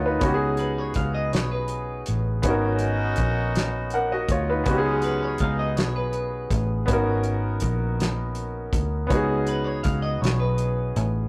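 Slow six-eight R&B with a sultry, late-night mood, where a bright baby grand piano and a dark, round, foam-muted electric bass sit up front over a cloth-damped drum kit with a fat snare and tight kick, a clean picked electric guitar adds a second line with a warbly pitch drift, and a distant, roomy horn section drops loose stabs from 2.4 to 5.7 seconds, all in a rough rehearsal-room recording with tube saturation and moderate reverb.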